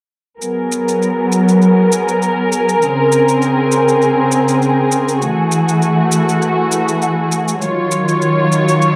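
The recording sits in a dark, small-room space, where wet digital reverb lends a soft halo to this short passage cut from a longer piece. It is relaxed, warm sunset chillout at 100 BPM in 4/4, with a light swing on the 16ths. A muted studio string section, bowed con sordino with vibrato, holds sustained chords from 0.4 seconds through G#m9, A#m9, F#m9 and D#m9. Its veiled ensemble tone sits up front yet sounds distant, shaded by a low-pass filter and a filter sweep. Lower in the mix, an electronic shaker adds a layered, overdriven grit until 8.9 seconds.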